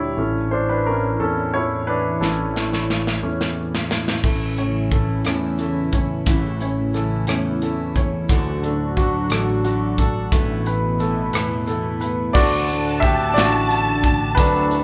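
A polished live-room recording with moderate studio reverb opens this swaying, heartfelt six-eight pop ballad, where a clear, up-front baby grand piano leads over a shimmering, chorused pulse-width pad and a growly fretless electric bass. An airy studio drum kit with a punchy kick comes in at 2.2 seconds with a fill, and a bright, picked steel-string acoustic guitar adds arpeggios from the background at 4.2 seconds. After the chords have moved through A, D and Asus2 and back to D, a lush symphonic violin section enters at 12.4 seconds with a smooth, expressive second line.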